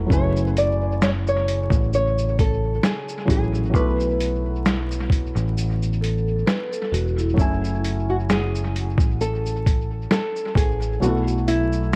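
A lazy 66 BPM groove in 4/4 with a 55% swing on the sixteenths sets this nostalgic, melancholic lo-fi hip hop piece in F# minor, cut from a longer work. The sampler-style drum kit sits up front, pitched down, compressed and overdriven, with a thumpy kick, medium-tuned snare, hi-hat and shaker carrying dub echo; the kick drops out from 11.0 s to the end. Beneath it, a dark, round picked electric bass plays low and close, while a felt-muted upright piano adds soft, intimate chords with audible action noise, dulled by cassette tape colour and a low-pass filter. A small, fingerpicked nylon-string guitar carries the melody through a low-pass filter and dub echo, moving between F#m9 and B7sus4. Briefly, from 6.0 s to 7.6 s, a vibraphone with soft mallets adds a metallic, ringing second line with slow motor vibrato, and the whole mix is echo-heavy, with light small-room reverb and vinyl crackle.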